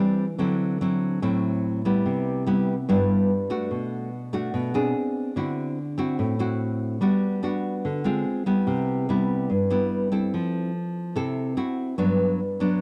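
A dry, close 1970s-style studio recording with light reverb and a small room ambience frames this breezy, sunny bossa nova, cut from a longer piece, in G major at 145 BPM in a straight 4/4. A solo fingerpicked nylon-string guitar sits up front, its woody, classical tone and old strings spanning G2 to A4 as it moves through D9, Cmaj7 and Bm7. At 7.0 s the harmony turns to Gmaj7 and a colourful G13b9, passing through Fmaj7 before settling on Gmaj7 at 12.0 s.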